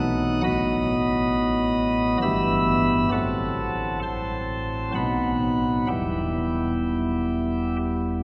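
A pipe organ on soft flute stops carries this short chorale-style classical fragment alone, its warm, baroque voicing touched with chiff at the start of each note and spanning from a deep E1 up to F#6. The mood is dark and solemn, set in E minor and moving in a slow 3/4 at around 62-68 BPM with a flexible, rubato pulse. The harmony passes from B7 over A to E minor over G, through a diminished chord on F# and a B major chord at 4.9 seconds before settling on E minor at 5.9 seconds. The organ sits up front in the mix, yet the listener seems placed farther back in a cathedral, where a long, wet reverb of about 4.4 seconds lingers around every chord. Tuned slightly low at A4 = 438 Hz, the fragment is cut from a longer piece and lasts just over eight seconds.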